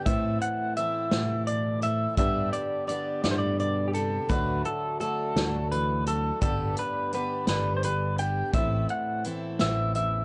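A wistful, stirring indie folk piece in 6/8 opens with a dark, slightly broken-up electric guitar carrying the melody up front with harmonic tremolo. Beneath it sit a full-bodied fingerpicked dreadnought with audible finger squeak in the background and a bright, boxy swing-picked acoustic guitar in plate reverb. From 0.1 seconds a woody, very quiet upright piano, a round, punchy fingered electric bass and a roomy acoustic drum kit played with bundle sticks join over chords moving through Am, G, D and G before returning to Am, all colored by the worn, warbling pitch drift of old cassette tape, a muffled top end and light reverb.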